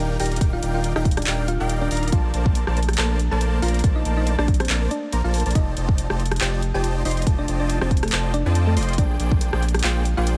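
Future bass at 140 BPM in Bb major, this bright, euphoric fragment moves through lush Ebmaj9, Bbmaj9, F13 and Bb13 chords with a half-time, swung feel. A deep saturated sub bass pumps alongside a punchy, up-front electronic kick (from 0.4 s) and a layered dubstep kit of handclaps, rim clicks and bright, tape-warm hats that joins at 0.2 s. A round, tine-like thumb-piano pluck carries the melody with chorus and dub echo, while a huge detuned supersaw riff pumps alongside it. A dreamy, mellow lead arpeggiates high in the background with vibrato and echo over a very quiet, breathy pad with a slow attack, all in a close, dry mix.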